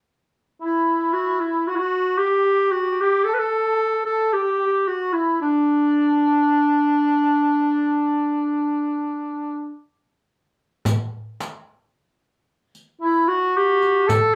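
This festive, stately Turkish makam ensemble piece in 10/8 opens at 0.6 s with a soft-attacked clarinet carrying the melody up front, alongside a mellow cor anglais with light vibrato playing a quieter second line, both in a classical style. At 10.9 s the music moves into a new section as a crisp metal-shell darbuka struck with hard hands and a riq with dark jingles under soft hands enter. The live-in-one-room performance sits in a studio reverb, and this is cut from a longer piece.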